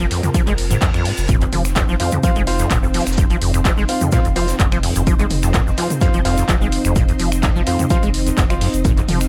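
Acid house with a driving, trippy mood, heard as a short cut from a longer piece in a dry, close-sounding mix. A deep, rubbery acid bass riff with a resonant sawtooth pluck runs throughout, saturated with overdrive, ensemble chorus, cassette tape color and tape echo, while a round sine sub bass sits beneath it with sidechain pumping. A lush vintage string machine holds sustained chords with a slow attack and mellow ensemble chorus, pumping against the beat. A tape-warm analog drum machine of finger snaps, handclaps, hi-hat and toms plays from the start, and the punchy electronic kick joins it at 0.3 seconds, with a very quiet, gritty breakbeat kit of hi-hat, shaker and high-tuned snare and a grainy egg shaker tucked in the background. An electronic reverse cymbal rises into the groove at 0.6 seconds, and from 2.0 seconds a brilliant grand piano adds stabs touched with tape echo.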